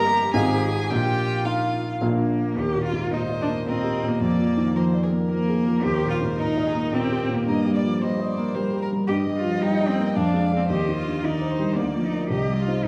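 A brisk, straight 3/4 pulse at 111 BPM drives this cheerful, spirited classical-period movement for piano quartet in E-flat major, heard as a short cut from a longer piece. The concert grand piano carries the accompaniment up front, its deep bass and short sustain giving the texture a firm footing across the full 12.9 seconds. Above it, one violin sings the melody with a close, even tone and vibrato, while a second violin adds a focused inner line with a smooth top. The cello shapes its own second line with soft attacks, portamento and an expressive, rich sound. After a brief opening of about 2.6 seconds the music moves into a new passage, all of it set in a recital hall reverb with small room ambience.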